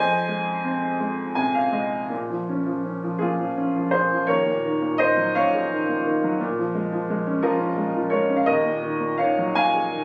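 A clear, woody upright piano opens this short excerpt alone, sitting up front in a lyrical classical solo piece in Bb minor with a melancholic, wistful mood. The playing moves at a slow 57 beats per minute in 6/8, with uneven beats and a free rubato that lets the phrases breathe. A brief fill from 1.0 to 2.1 seconds links the opening passage to a new section, where the harmony settles on Bbm7 and then alternates between Ebm11 and Bbm7. The piano spans from Eb2 up to Ab5, giving an open sound. A moderate small-room reverb and the character of a phone recording made in the studio room add a touch of natural space. The 10-second fragment is cut from a longer piece.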